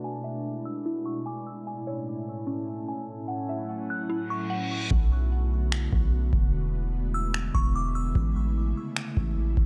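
A half-time 4/4 pulse at 148 BPM carries this melancholic, hazy cloud-rap piece in B dorian, moving through E7, Amaj7, F#m7 and Bm7 chords. It opens with an ethereal, detuned pad under ensemble chorus, reverb and sidechain pumping, a woody, warbling FM pluck playing arpeggios through chorus and delay, and a faint glassy texture of drifting overtones, joined at 0.7 s by a delicate, tinkling tine bell melody colored by phaser, while a filter sweep runs and a low-pass filtered digital ambience shades the sound. A reverse cymbal at 4.3 s leads to 4.9 s, where the pluck and glass texture stop and a booming analog drum machine with a deep kick and finger snaps enters up front beside a long, sine-based 808 bass, and the bell returns briefly at 7.1 s.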